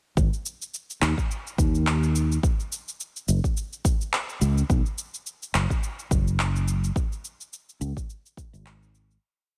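Earthy and meditative, this short organic downtempo piece rides a swung groove where a dark, round fretless electric bass plays an up-front dub-style line with analog chorus and sidechain pumping, over a deep, soft electronic kick drum that stops at 8.5 seconds and a tape-warm layered beat of electronic shaker and handclaps, both touched with studio reverb, before it all fades out from 6.2 seconds.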